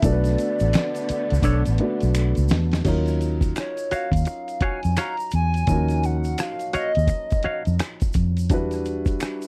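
A dry, close 1970s-style studio sound frames this sultry, introspective neo-soul R&B cut from a longer piece, with a gritty, compressed sampler-style drum kit with a thumpy kick and a dark, round, foam-muted fingered electric bass with tube saturation sitting up front over a swung groove. A woody, vintage upright piano carries the accompaniment while a soft, hollow clarinet-like synth lead with chorus, vibrato and slapback echo sings the melody, and a bowed studio string section holds smooth, focused chords until 2.8 seconds. At 1.4 seconds a drum fill arrives as a clean, fingered semi-hollow electric guitar enters with a second line, while a distant tube shaker and finger snaps sit low in the mix.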